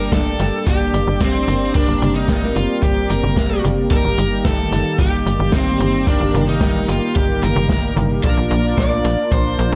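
Nocturnal and cinematic, this short synthwave excerpt in G minor moves at 111 BPM in a straight 4/4, with a dark, overdriven picked lead guitar carrying the melody through delay over a mellow, chorused analog pad, bold brassy synth stabs, a punchy, nasal sequencer bass pumping beneath, and a boomy kick plus an open jazz kit of hi-hat, snare and toms with rolled-off tops, all set in light reverb as the chords shift from Gm to Eb/G at 3.9 seconds and Bb at 8.2 seconds.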